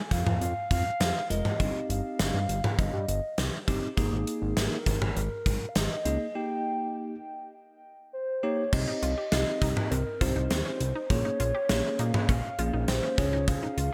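Bright 1980s-style digital production with light small-room reverb frames this cool, nocturnal synth-pop excerpt at 101 BPM, where a hollow, woody clarinet-like lead with chorus and delay carries the melody over a fat detuned analog bass, an up-front gated 80s drum kit with bright cymbals, and a bell-like tine electric piano entering at 1.3 seconds, while a lush, warbling unison pluck adds background arpeggios from 8.9 seconds after a break that begins at 6.3 seconds.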